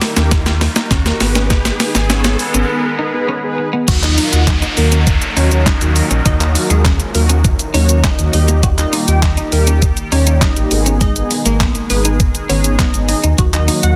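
This driving, energetic dance-pop excerpt opens on a build-up: a detuned 8-bit drum machine plays a fill under a rising sweep, with a clean, picked electric guitar riff and a slow-blooming, resonant sawtooth pad sitting in the background. A short break arrives at 2.7 seconds. The drop lands at 3.9 seconds, and a glassy, crystalline wavetable pluck carries the melody, its decaying notes coloured by ring modulation, a moving notch and a dub echo. Beneath it, a deep sine-and-triangle sub bass with an added octave sits up front with sidechain pumping. The sampler-style drums also drive the track with a thumpy kick, a medium-tuned snare, handclaps, hi-hat, shaker and crash. Round, dark synth brass with phaser and a filter sweep fills out the accompaniment, and the riser and downlifter effects run until 8.6 seconds, all inside light digital ambience and a dense, heavily limited modern master.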